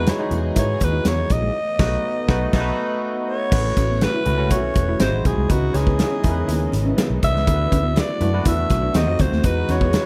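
A breathy, raspy alto saxophone with slapback echo carries the melody from the start of this upbeat, urban slice of polished 1980s jazz-funk pop in E major at 122 BPM, over a barky, lightly overdriven tine electric piano with lush chorus, a very quiet bowed string section holding sustained chords, a dark, clean guitar riff tucked in the background, and a round, foam-muted fingered bass. An up-front modern drum kit with bright cymbals, tight kick and a pumping room sound joins at 0.1 s alongside soft-handed, distant congas, and the band hits an accent from 1.6 to 3.5 s before moving into a new section. The dry mix rides lush extended chords such as Emaj9, C#m9 and D69, passing through a D#dim7 to land back on Emaj9 at 9.4 s.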